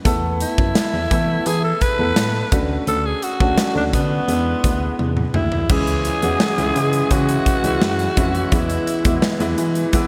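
A raspy, close-miked alto saxophone carries the melody up front with vibrato, scooped notes and a touch of delay in this nostalgic, dramatic 1980s-style pop fragment at 85 BPM. A clear baby grand piano with lush chorus plays accompaniment over a punchy, round FM bass and a big rock drum kit with bright cymbals and a punchy kick, moving through Esus4, Dmaj7 and E7. A drum fill at 5.0 seconds leads into a C#m passage where a very quiet, reedy pedal harmonium enters at 5.7 seconds with sustained chords, all set in a lush hall reverb with bright digital production.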